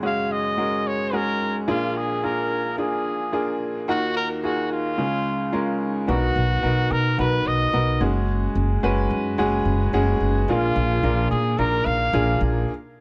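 A lightly swung 4/4 pulse at 109 BPM carries this hopeful, anthemic piano-driven pop excerpt, cut from a longer piece, in which a brilliant upright piano with audible action noise and long sustain lays down chords from F#sus2 through A#7 and D#madd9. A punchy trumpet with light vibrato and slapback echo sings the vintage pop-style melody up front, and a woody pizzicato upright bass on steel strings enters at 6.1 s as the harmony moves to Bmaj7. The dry, close sound of a small 1970s-style studio room keeps the playing intimate until a stop at 12.7 s.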